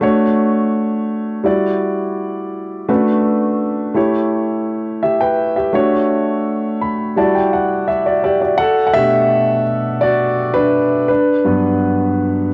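Cinematic and bittersweet, this soul fragment is cut from a longer piece and features a solo concert grand piano that sits up front with an intimate, smooth, vintage character, deep bass and audible action noise. The piano moves through lush chords such as Dmaj7, Em9 and Bm7, adds a fill at 6.5 seconds, and then takes a solo passage from 8.6 seconds that settles onto Gmaj7. The cassette-tape coloring, light reverb and small-room ambience give it the feel of a private home recording.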